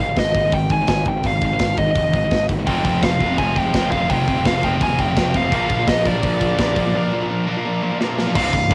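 A nasal lead guitar with a parked wah carries the melody from the first second, its dark, overdriven tone sitting high between D5 and Ab5 over this relentless, dark heavy metal excerpt at 168 BPM in a straight 4/4. Beneath it, a high-gain distorted guitar grinds out a double-tracked riff from the background, while a fuzz-laden picked electric bass growls low from C1 to Bb1. A tight metal drum kit enters at 0.2 seconds, up front and gritty, with bright china and crash cymbals, hi-hat, a medium-tuned snare and a tight kick in a big-room sound. At 2.7 seconds a second distorted electric guitar joins with its own double-tracked, overdriven riff reaching from C2 up to Bb4, as the harmony moves from Fm toward Bb. A break arrives at 6.9 seconds and closes with a short drum fill, all under light reverb on a home cassette recording.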